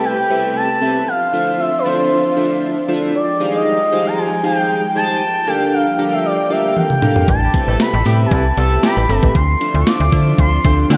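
A dreamy, reverb-soaked mix frames this late-night, funky stretch of early-eighties boogie funk at 116 BPM, cut from a longer piece. A smooth, expressive portamento lead with chorus and vibrato sings the melody over a glossy, detuned chorused polysynth and a lush, woody string section holding sustained chords through Am9, Dm9, Fm9 and Gm9. At 6.8 seconds a crisp, overdriven 8-bit drum machine with a thumpy kick enters on a fill, joined by a snappy, metallic FM slap bass at 7.3 seconds and a brief, distant, roomy horn section playing a loose second line.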